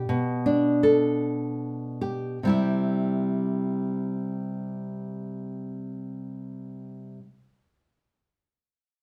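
In a slow, straight 6/8 at 46-57 BPM counted in dotted quarters, this peaceful, pastoral folk excerpt features a solo fingerpicked nylon-string guitar in C major, tuned to A4 = 439 Hz, full-bodied and warm with fresh strings, set up front in a wet studio reverb; it eases into a slowdown over a Gadd9/B chord before settling onto C at 2.4 seconds, with the guitar ending at 7.2 seconds.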